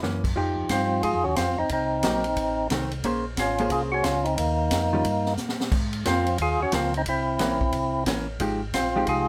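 A dark, picked hollow-body electric guitar, a round tonewheel organ holding down the bass with key click and a slowly turning rotary speaker, and an acoustic drum kit with a high-tuned snare and punchy kick set this swinging soul jazz organ trio in motion at 179 BPM in 4/4. At 0.7 seconds a fat, percussive tonewheel organ takes the melody up front, its third-harmonic percussion and chorus vibrato sounding clean with the rotary speaker stopped. The compressed guitar comps beneath it while the drums work across ride, hi-hat, snare, kick and crash, and they break into a short fill at 5.4 seconds. The harmony moves through rich minor and altered colours, from Fm9 through Cm7b5, Bbm9, Ebadd9, Ab69 and C7b9 before returning to Fm9. A moderate club reverb gives the soulful groove a natural room sound, and this short passage is cut from a longer piece.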